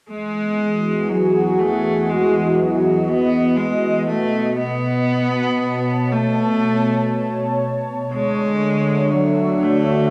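A weightless ambient excerpt in E major at 60 BPM features an up-front, detuned analog pad holding slow-attack sawtooth chords with chorus and cassette warble, while a bright, nasal solo cello with an airy bow and light vibrato sings a melody through tape and analog delay, and a very quiet, earthy chamber cello section bows the bass beneath, all in a wet small room heard on a home cassette recording as the harmony moves from Emaj9 to B7 at 4.1 seconds and Dmaj7 at 8.1 seconds.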